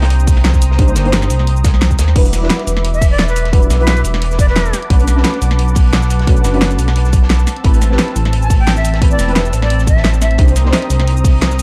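Dreamy and rolling, this liquid drum and bass cut at 175 BPM in E minor sets a deep, rumbling detuned saw bass up front beneath a punchy electronic kick, a fat-snared pop kit with crash, hi-hat and shaker, and a crunchy breakbeat kit with a rolled-off top tucked in the background, while a soft chord stab with dub echo and a warbling vintage analog pad under sidechain pumping carry the chords, and a breathy, bright jazz flute with expressive vibrato and dub echo drifts in at 2.9 and 8.4 seconds through digital ambience.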